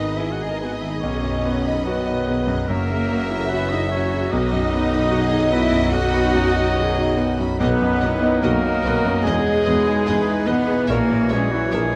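A brooding, tragic romantic movement for piano and orchestra centres on an intimate concert grand piano, up front with audible action noise and deep bass, carrying the melody alongside a lush, soft-attacked violin section. A clear oboe, a solo clarinet in the background, an airy flute section and a second violin section with portamento trace second lines. A mellow bassoon and a smooth, very quiet viola section accompany, while faint French horn and bright trombone sections hold sustained chords. A distant, roomy tuba, a bowed double bass section and a cello section in the background anchor the bass, all captured with close, detailed microphones and light reverb under a flexible rubato pulse.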